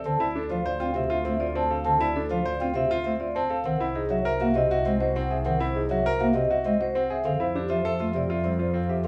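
A metallic vibraphone, struck with medium hard mallets and shimmering with motor vibrato, carries the melody over clear, up-front grand piano arpeggios from the very start of this propulsive, hypnotic minimalist piece in three. A hollow stopped-flute organ stop with soft chiff and tremulant fills in the accompaniment, while a single bowed double bass adds a rich, expressive line with gentle portamento. Light reverb frames the short cut as the harmony moves from Dm7 to C7alt at 3.7 seconds and settles on Fmaj9 at 7.3 seconds.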